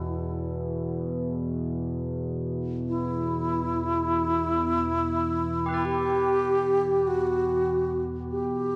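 A worn, warbling cassette-tape sound with drifting pitch colors this short cut from a longer piece, and a lush hall reverb of 2.1 seconds surrounds it. It is haunting, meditative world music, tuned slightly sharp with A at 441 Hz. A breathy alto flute carries the melody up front between E4 and G4, its crisp attack, vibrato and expressive phrasing giving it a warm, human presence. Beneath it, an analog drone spanning E2 to B2 sustains evolving sawtooth, pulse and triangle tones with ring modulation, pulse-width modulation and chorus, all shaped by a slow attack and a long release. Tubular bells sit softly between G4 and D5, their metallic, solemn ringing struck with a plastic hammer and placed in a boxy small room. All three parts sound together for the whole 8.8 seconds.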